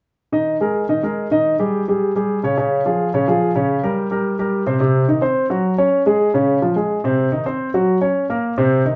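Sunny and lively, this jazz passage, cut from a longer piece, moves at a brisk 214 BPM in a straight 4/4, with a solo grand piano tuned to A4 = 441 Hz playing from 0.3 to 9.0 s across a range of C3 to Eb5. The piano sounds intimate, natural and up front, with audible action noise and long sustain, set in a wet club reverb. Its harmony moves from Ebsus4 through Ab5/Eb, Db and Bbm69, then shifts at 4.8 s into a second section that alternates Cdim and Db before settling on Bbmadd9.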